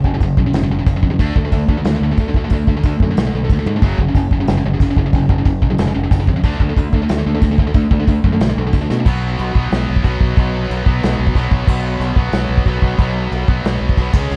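Heavy metal at a driving 183 BPM in straight 4/4, this excerpt from a longer piece feels epic and dark. A tight distorted guitar, picked and double-tracked, sits up front with a bright, biting edge as it carries the riff through the whole 14.4 seconds, moving between F#5 and D5 power chords before shifting to B5 at 9.1 seconds, where a second section begins. Underneath, a growling fingered electric bass adds overdriven, punchy weight in a direct and amped tone. A vintage kit played with brushes brings a smooth, rolled-off character from a small room, with a punchy kick, medium-tuned snare, toms, crash and china cymbals, and drum fills land at 3.7 and 8.9 seconds. Light reverb and a dark, warm production frame the heavy sound.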